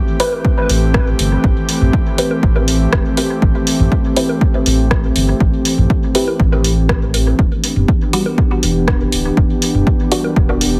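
Cavernous and nocturnal, this 121 BPM dub techno excerpt moves from Am7 to Em7 at 7.4 seconds, with a breathy, detuned pad pumping up front, a muted, nasal chord stab under a filter sweep with phaser and dub echo, a punchy, dry electronic kick, an overdriven deep house kit of hi-hat and rim click, distant analog bongos and toms, and a round, soft sub bass, all in light reverb with a heavily compressed radio sound.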